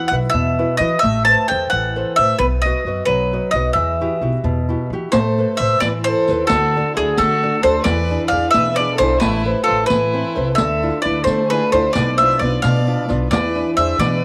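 This wistful, romantic Italian folk serenade opens with a bowl-back mandolin picking the melody on its double strings, set up front, over a small, fingerpicked nylon-string guitar whose finger squeaks are audible. A pizzicato upright bass with woody, growly steel strings joins at 0.1 seconds. The music moves in a straight 6/8 at 88 BPM, counted in dotted quarters, and is tuned to A4 = 444 Hz. It begins in E harmonic minor, and at 5.1 seconds it shifts to A harmonic minor. At that point a single bowed violin enters with a second line, its soft attack, vibrato and portamento giving it an expressive, close, warm voice, while a riq adds bright jingles with a vintage, band-limited edge. Light reverb and studio ambience frame this excerpt, which is cut from a longer piece and follows chords such as Amadd9, Bdim and E7.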